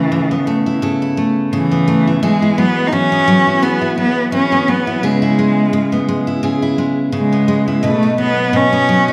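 A relaxed 86 BPM pulse in 4/4 carries a light 16th-note swing through this short acoustic pop excerpt in E major, heartfelt and sunny in mood. A picked steel-string acoustic guitar provides the accompaniment from the first second, its dreadnought body giving a full-bodied tone that sits up front, ranging from B2 to B4. Over it, a single bowed cello carries the melody between E3 and D#4, its rich, nasal voice focused and touched with vibrato, also placed close to the listener. The harmony moves from Aadd9/C# to Eadd9 at 2.2 seconds, then to C#m7 and finally B before the passage breaks off at 9.1 seconds. Both parts sound within a church or concert hall, bathed in a wet recital-hall reverb with a 1.5-second decay that lends the duet a spacious glow.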